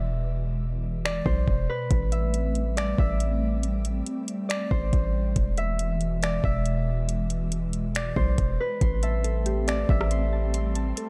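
Atmospheric cloud-rap hip hop with a melancholic, ethereal half-time feel, this excerpt opens on a thumb-plucked, ringing Celtic harp melody softened by a low-pass filter and digital delay. Beneath it sit a hollow, flute-like pad in dark sustained chords with ensemble chorus and sidechain pumping, and a deep, boomy 808-style bass. An up-front R&B drum kit with a knocking kick, metallic hats, snaps and rim clicks joins at 1.1 s, roughened by 12-bit sampler grit, and round, warbling electric-piano-like synth keys add arpeggios from 8.8 s in a dry, close mix.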